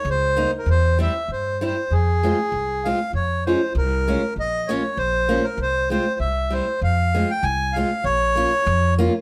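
A reedy, close-miked single-reed accordion carries the melody over woody, thumpy pizzicato upright bass from the start, joined at 0.4 seconds by a picked steel-string acoustic guitar with audible finger squeak, in this bouncy, festive alpine dance-band excerpt in F minor at 98 BPM in 2/4, played live together in one room with moderate studio reverb.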